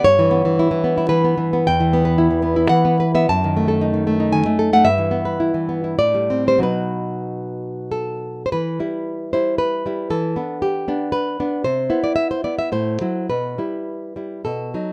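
A fingerpicked nylon-string guitar sits up front in this short romantic solo piece, its acoustic tone intimate and passionate as it moves in a rubato triple metre across a range from E2 to A5. The opening phrase turns through minor and diminished harmonies before settling on a B chord, and a second passage from 8.5 seconds begins on Em and moves through G/E, Cmaj7 and a half-diminished colour before resting on Em/B. Light reverb gives the classical playing a gentle sense of space in this portion cut from a longer work.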